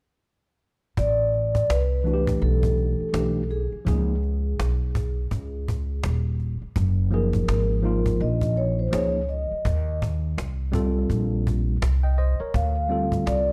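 At 1.0 s a mellow, metallic vibraphone melody with slow motor vibrato arrives alongside a woody, growly pizzicato upright bass held up front and a snappy, close cajon with snares, setting a cool, nocturnal jazz-hop groove at 83 BPM with a swung 4/4 feel. A worn, slightly out-of-tune tine electric piano joins at 2.0 s, lightly overdriven and up front, adding accompaniment through chords that move from Am11 toward Dm7. The dry, gritty recording has little reverb, and this excerpt is cut from a longer piece.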